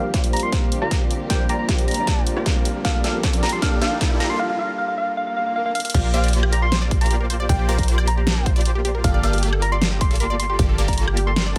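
A round, gentle FM synth lead carries the melody through chorus, phaser, cassette-tape colour and delay, with a filter sweep across the build-up, in this lush, euphoric future bass excerpt at 155 BPM in a half-time 4/4 feel in Bb major. During the build-up, a clear, intimate grand piano with audible action noise and very quiet, dark bowed strings hold the harmony, while an electronic riser and swell sits in the background and the drum kit plays fills. A break at 4.4 s leads to the drop at 5.9 s, where a lush, detuned unison pluck adds delayed arpeggios over punchy detuned supersaw stabs, a deep, boomy 808 bass, a huge snare with hi-hat, crash and woodblock, and an up-front kick. The pluck, stabs and bass pump together in a digital ambience.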